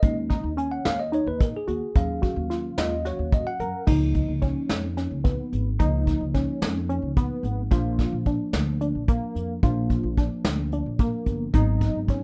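This progressive instrumental piece for a small band moves in an uneven 7/8 at 219 BPM counted in eighths, with an intricate, tense mood, and it is cut from a longer piece. A bell-like tine electric piano opens with a bright, clean solo over the first 3.9 seconds before settling into accompaniment. From the very start it is accompanied by a pizzicato upright bass with a woody tone sitting up front, and a soft brush drum kit with crash cymbal, hi-hat, tight kick and a medium-tuned snare that sounds natural and close, as if in a small room. From 0.3 seconds a tight sequenced synth adds driving sawtooth arpeggios, detuned with a filter pluck and softened by chorus into an evolving, mellow texture. The harmony moves from Dbsus2/Eb and Ebm7 into a second section at 3.9 seconds, passing through Db7 and Bb to Abm7. Light reverb gives the whole a rough home demo feel.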